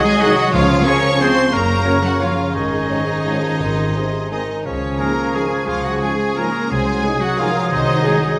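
A wet scoring-stage reverb surrounds this sweeping, festive orchestral ballroom waltz in Db major, a brief cut from a longer piece moving in a rubato 3/4 at 164-196 BPM. A clear, intense violin section carries the melody with vibrato, while a rich violin section, bright clarinet, distant mellow oboe and airy silver flute weave second lines in the background. Beneath them, a clear bassoon and dark, woody violas accompany, a ringing fingerpicked harp plays arpeggios, and an expressive cello section and a close double bass section with portamento hold the bass. Very quiet mellow horns and trombones sustain chords and warm trumpets add stabs from 0.2 s, while calf-headed timpani enter at 0.5 s and return at 3.6 s.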